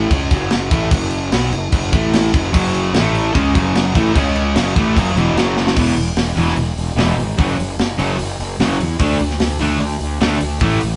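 Driving and heavy, this hard rock excerpt in F# minor pounds along at 149 BPM in a straight 4/4, with a growly, punchy fuzz bass and a tight metal drum kit up front beneath a hollow-bodied overdriven guitar riff in the background, joined at 2.5 seconds by a bright, cranked stack guitar riff, while a drum fill at 5.6 seconds leads into a second section moving through E5, F#5 and D5, all captured as a band playing live in one room with moderate studio reverb and a rolled-off top.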